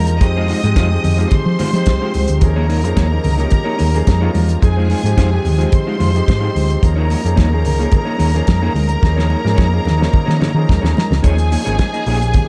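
A dark, warm studio sound frames this sultry, glamorous disco passage at 109 BPM in a straight 4/4, cut from a longer piece and alternating between Fm7 and Eb7sus4. A round, amped hollow-body bass and a dry, up-front 70s drum kit with a fat snare and tight kick anchor the groove, while a short-sustain baby grand piano, a clean, fingered electric guitar and very quiet thick-skinned congas fill the accompaniment. A lush, distant bowed string section with vibrato floats above as a second line, and a drum fill from 9.0 to 11.2 seconds leads into a new section.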